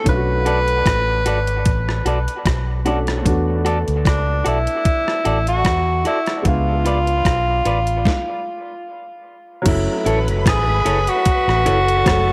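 A clear, roomy tenor saxophone carries the melody up front from the opening, its tone colored by tape echo, while a warm baby grand piano fills in accompaniment behind it with a touch of dub echo. This is a bittersweet, smooth lovers rock reggae passage, cut from a longer piece, with a gently swung feel. A dark, round, foam-muted electric bass and a detuned 8-bit drum machine, sampler-style with a thumpy kick, medium-tuned snare, rim clicks, hi-hat and crash, sit prominently underneath, the drums carrying the ambience of a large room. Slightly broken-up, lo-fi guitar stabs, picked and compressed through a small old amp, drift through dub echo over a Bm7, E9sus4 and C#7b9 progression. A stop arrives at 8.1 s, and at 9.7 s the music settles onto F#m7 as a swirling, bright string machine enters with a slow-attack sawtooth line, thickened by ensemble chorus and phaser, all under a light reverb.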